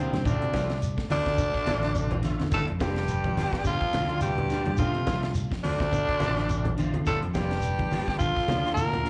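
Afrobeat groove at 106 BPM in G minor, driving and hypnotic, cut from a longer piece as it swings lightly between Dm7 and Gm7, with a growling, gritty tenor saxophone up front carrying the melody through slapback echo and analog delay while a breathy, whispered trombone and a distant, punchy baritone saxophone add second lines beneath. A fingered electric bass sits warm and direct, clean picked guitar arpeggios and twangy, slightly broken-up guitar stabs with ensemble chorus hover in the background, and a tight funk kit with a high-tuned snare enters at 0.1 seconds alongside ringing low-tuned congas, with a grainy shekere joining at 0.3 seconds. The whole band comes across as a live gig heard through the venue's PA on cassette tape, wrapped in club reverb.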